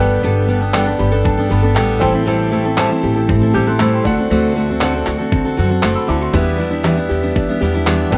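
A straight 4/4 pulse at 118 BPM carries this tender, wistful acoustic pop piece in E minor, cut from a longer work, with a dusty soul sampler-style kit entering at 0.5 seconds with a thumpy kick, handclaps and tambourine under gritty, compressed overdrive. A woody pizzicato upright bass anchors the low end, while a full-bodied jumbo steel-string acoustic guitar sits up front, its picked fresh strings warm with finger squeak. A small fingerpicked nylon-string guitar weaves arpeggios in the background. A present baby grand piano with long sustain adds warm accompaniment and a fill from 0.7 to 2.3 seconds. The harmony moves through Gadd9, Am7, D7 and Em7 in a close, dry room.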